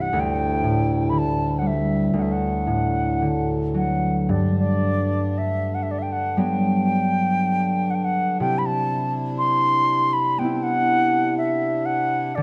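A pure, wooden baroque flute with vibrato and a crisp attack sings a tender, pastoral Celtic slow air in G major at a free, rubato 59 BPM, with a ringing, thumb-plucked concert harp up front beside it and a reedy, breathing harmonium sustaining chords further back in its boxy small room, all in a moderate stage reverb as the harmony drifts from Dsus4 through Gmaj7 at 4.3 seconds to Cmaj7 at 8.4 seconds in this brief fragment of a longer piece.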